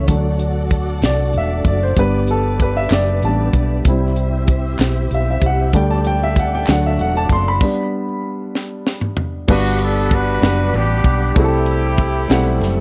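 A slow, soulful gospel piece in 6/8 at 64 BPM in G major opens with an intimate grand piano leading, its action noise audible, over a dark, round hollow-body bass, a tight funk kit with a high-tuned snare, a clean tonewheel organ with key click and slow rotary speaker in the background, and lush, bowed strings with portamento. Crisp, vintage handclaps join at 2.9 seconds, the strings drop out at a stop at 7.6 seconds, and a drum fill leads into a distant, roomy horn section carrying the melody with light vibrato and soft attack from 9.5 seconds. The dry, close small-room sound gives it an uplifting 1970s studio character.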